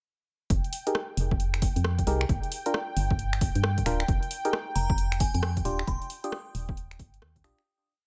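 A swung two-step beat at 134 BPM drives this late-night, bouncy UK garage piece in F dorian: a dry, overdriven electronic kick sits up front, and an analog drum machine skips through hi-hat, finger snaps and rim clicks beneath a dark, hollow, organ-like FM bass riff, while sparse, echoing organ stabs carry chorus and a cassette-tape tint, a smooth, detuned sawtooth pad holds a high note through sidechain pumping, and a glassy FM synth bell enters at 4.8 seconds with short, bright phrases as the groove fades out from 5.3 seconds.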